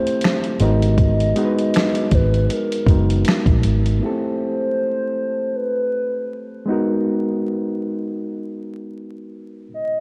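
Lo-fi hip hop with a hazy, reflective mood and a swung 4/4 feel, drifting between Am9 and G#m9 chords under vinyl crackle and a dreamy wash of cathedral reverb. A gritty, overdriven reed electric piano carries the accompaniment through a combo amp, while a hollow, woody clarinet-like synth lead sings a soft, sustained melody coloured by chorus, vibrato and analog delay. Up front, a compressed sampler-style drum kit with thumpy kick, snare, finger snaps and hi-hat joins a dark, round, foam-muted electric bass, and both drop away at 4.0 s to leave the keys and lead floating on their own.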